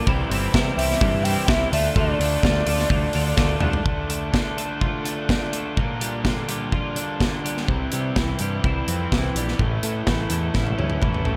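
Restless and moody, this indie rock excerpt at 126 BPM in D minor sets a bright, overdriven garage guitar riff against a twangy, chorused twelve-string electric, over a growling, round picked bass that sits out for a stretch mid-way and a boomy, up-front rock kit with drum fills, while a breathy, distant alto ocarina with vibrato and delay carries a brief melody from 0.8 to 3.4 seconds in a lightly reverberant room.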